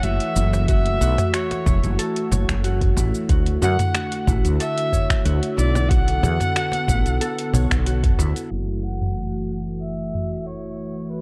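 This hypnotic stretch of organic downtempo opens with a bowed kamancheh carrying the melody over a smooth, soft-attack sawtooth pad, fingerpicked Celtic harp arpeggios and a growly, round fretless electric bass, set at 92 BPM in 4/4 with a straight feel in F# minor. The kamancheh sounds rich yet distant, with vibrato and portamento, and both it and the ringing harp trail tape echo. The detuned pad carries chorus and sidechain pumping as it holds F#m7 and then Bm7, while the tube-saturated bass sits up front. An afro-pop kit of finger snaps, metallic hi-hat, shaker and toms runs beneath, its hats, toms and snare muffled by low-pass filtering, and a woody, hard-handed cajon joins in the background at 0.4 seconds, followed shortly by a deep, tape-warm electronic kick that drops out at 8.2 seconds. From 8.5 seconds the drums pass through a filter sweep as the harmony returns to F#m7, rounding off a dark, lightly reverberant production with digital ambience.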